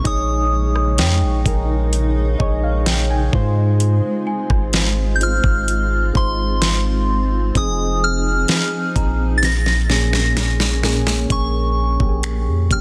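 Longing and sensual, this short cut from a longer contemporary R&B piece moves at an unhurried, straight 4/4 pace over chords that pass from Eb7sus4/Bb through Ab6 and Fm7 to Bbm7. A smooth, electronic drum kit sits up front with a knocking kick, deep snare with soft clipping, metallic hats, finger snaps and rim clicks, while a long, deep sine-toned 808-style bass decays mellowly beneath it. Soft, round electric-piano-like synth keys with chorus and phaser supply dark accompaniment and a fill from 1.9 to 3.8 seconds, and a pure FM synth bell carries the high melody through chorus, phaser and digital delay. In the background, a cloudy, evolving granular pad breathes with sidechain pumping and its own reverb until 11.3 seconds, and a sweet, slightly out-of-tune celesta with a boxy, small-room character adds delicate delayed touches. A drum fill from 9.4 to 11.3 seconds leads into a brief closing section, all within a dense, heavily limited modern master with little reverb on the mix.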